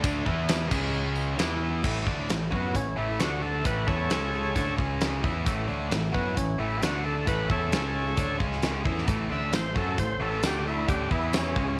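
A straight, driving 4/4 groove opens this swaggering classic rock excerpt, carried by a big acoustic drum kit that sits up front with a fat snare, punchy kick and rolled-off top, while a jingly tambourine sounds in the background at the start and again near the close. A growling fingered electric bass adds a bright, overdriven low end, and two distorted guitars play the riff together, one tight and bright, the other sludgy and very quiet. A biting, double-tracked overdriven guitar plays the riff in the background only until 1.8 seconds, when a very quiet picked twelve-string acoustic guitar enters with a shimmering, octave-doubled accompaniment. At 2.5 seconds an overdriven tonewheel organ enters up front and carries the melody as a solo, its thick, gritty tone turning through a slow rotary speaker with slapback echo. The harmony stays rooted on A, moving through D and C# chords, and a light small-room ambience frames the mix.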